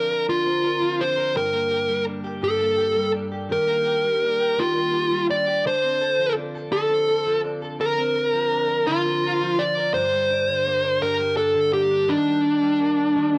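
This home recording on cassette has a moderate spring reverb that lends the short, 13.4-second fragment of a longer piece a lingering, slightly worn ambience. It is a melancholic, dramatic pop ballad in six-eight at 56 BPM, set in G minor with a straight feel and tuned to A4 = 439 Hz. Up front, a dark, smooth overdriven lead guitar picks the melody between D4 and D5 throughout. Beneath it sits a much quieter direct-recorded clean electric guitar, picked, compressed and double-tracked with a cassette-tape character, supplying accompaniment from G2 to Bb4. The chords move through Bbadd9/D, Gm, Ebmaj7 and Dm7 before the cycle returns, reaching Ebmaj7 again at 12.1 seconds.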